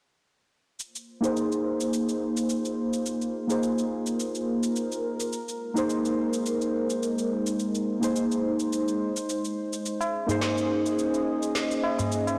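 An electronic cabasa and woody snare open this meditative organic downtempo piece at 0.8 s with a light swing, soon joined by dark, muted felt-like synth keys carrying chorus, delay and a low-pass filter sweep, then a warbly, nostalgic tape-like pad holding sustained chords through chorus, phaser, its own reverb and a filter sweep, before a high-tuned, ringing tabla, close and dry, enters at 10.0 s, the whole recording sitting in a lush hall reverb with a blown-out, overdriven sound as the chords move from Bbsus2 to Ab to Db5.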